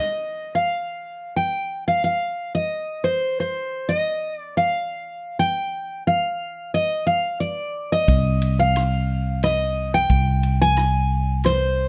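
The recording is dry and intimate, captured with close, detailed microphones that place the instruments up front. It is a melancholic, heartbroken acoustic folk-pop ballad in C minor, moving at 89 BPM in a straight 3/4. A bright, full-bodied jumbo steel-string acoustic guitar carries the picked melody from the start, staying between C5 and Ab5. At 8.1 seconds a fingered electric bass enters with a warm, direct tone on C2, alongside a natural country drum kit of punchy kick, ride cymbal and rim click, its cymbals bright in a studio room. The drums drop out at 11.6 seconds, while guitar and bass carry on to the end of this fragment cut from a longer piece.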